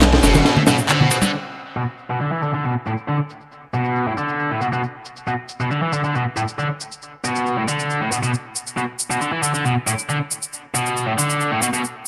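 This energetic, funky breakbeat cut opens with a crunchy, gritty acoustic kit of dark cymbals and a high-tuned snare, up front, alongside overdriven, filtered electronic handclaps and shaker and damped, thin-skinned congas heard close and dry. A tight, double-tracked electric guitar riff enters at 0.2 s, picked, bright and distorted with tube saturation and dub echo. The kit and congas fall away by 1.3 s, leaving the guitar and claps to drive on under light small-room reverb.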